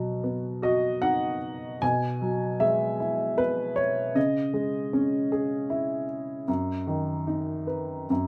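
Dark and melancholic, this brief excerpt of lyrical classical solo piano moves at 76 BPM in 3/4 with a rubato feel, set in B major. A woody, vintage upright piano sits up front in a light reverb, spanning F#2 to G#5 as it passes from B through Eadd9/B and C#madd9 before settling on B/F# near 6.5 seconds. Its smooth tone carries the whole 8.3 seconds alone.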